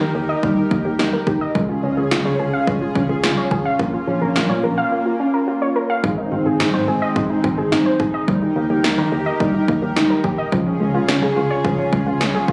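Bright and nostalgic, this synth-pop excerpt opens on a shimmering, detuned pulse-width pad holding sustained chords, a warbling, lo-fi sawtooth pluck spinning arpeggios through chorus and digital delay, and a round, punchy FM bass. Tape-warm 80s electronic drums with a punchy kick and gated snare join at 0.4 seconds, and the music drops into a silent gap between 4.9 and 6.0 seconds. The sound has the roomy character of a phone recording in a club, washed in plate reverb.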